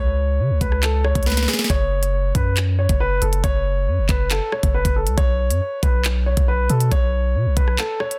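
A half-time drill groove at 138 BPM, ominous and dark, comes in at 0.6 seconds on an electronic kit with a knocking kick, sharp snare, crisp hi-hats, handclaps and rim clicks sitting up front, with a short drum fill at 1.3 seconds. Underneath, a deep, sine-toned 808-style bass with a fast attack holds long decaying notes in F# minor until a break at 7.8 seconds. A dark, mellow baby grand piano carries the melody with delay and long sustain, all in a dry, dense, heavily limited modern mix cut from a longer piece.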